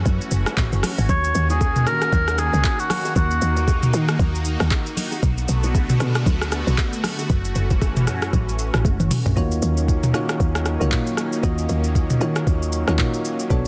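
A dry, dense, heavily limited mix carries this late-night, soulful, swung amapiano excerpt, where a woody, punchy log drum bass joins a smooth electronic R&B kit that sits up front with a soft kick and metallic hats, alongside a lush, detuned sawtooth pad that pumps with sidechain and shimmers through chorus and phaser, while bongos and congas murmur in the background until 9.4 s, a mellow cor anglais sings a brief classical-style line through tape echo from 1.1 s, and after a drum fill, round, chorused electric-piano-like synth keys enter as accompaniment.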